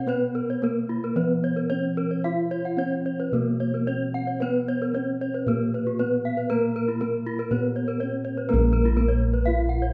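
Balinese gamelan in a ceremonial, brilliant mood, cut from a longer piece, where a bronze metallophone carries the melody with a ringing wooden-mallet tone and the shimmering beats of paired tuning. A second metallophone plays arpeggios higher up, sitting forward in the mix, while bossed gongs supply a round, bright bass colored by its own beating. Everything plays from start to finish in a moderate recital hall reverb, shifting into a new section at 8.5 seconds.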